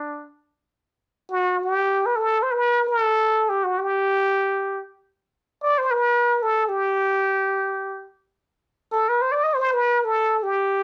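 In free, unmetered time, this passionate, stately passage from a Turkish makam ensemble piece features a lone trumpet with a plunger mute, playing close-miked and up front for the full 10.8 seconds. The jazz-inflected line growls and wah-wahs with a raspy bite, scooped notes, soft attacks and a light vibrato. A moderate studio reverb and dark production frame the muted horn.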